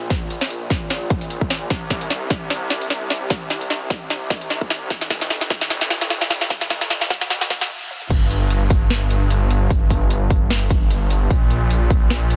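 Dry, dense and heavily limited, this bright, playful future bass excerpt at 150 BPM rides a swung half-time feel, with a thick, lush detuned saw bass pumping under sidechain and chorus throughout, while a punchy, overdriven electronic kick and a trap kit with a sharp snare, metallic hats, toms and crash cymbal drive a filter-swept build-up and drum fill that halts at 7.7 seconds before the drop lands at 8.1 seconds, all three parts sitting up front.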